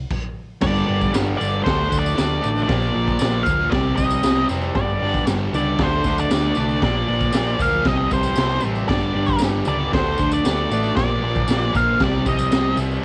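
A dark, round hollow-body bass opens this swaggering, gritty garage rock excerpt in G minor, with the raw drum kit arriving at 0.1 s: a punchy kick, a high-tuned snare and dark crash cymbals, all saturated and rolled-off on top in a small, pumping room. At 0.6 s a bright, double-tracked fuzz guitar riff pushes up front. Alongside it comes an octave-fuzz lead guitar, dark and distorted, carrying a high melody. A jingly tambourine sits close but in the background. At a straight 116 BPM in 4/4, the band cycles through G5, D5, Bb and C minor, with one pass landing on C5 instead. The whole take has the lo-fi grit of a home cassette recording in a small room, and it is cut from a longer piece.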